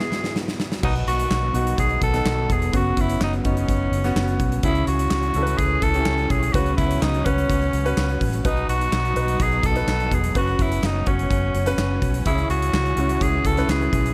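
A breathy, raspy tenor saxophone carries the melody up front in this bittersweet, driving piano-driven pop excerpt, over a polished baby grand piano, a lush, very quiet bowed string section holding sustained chords, and a huge arena drum kit with bright cymbals, handclaps and a punchy kick that opens with a fill before a dark, round, foam-muted electric bass enters at 0.8 s.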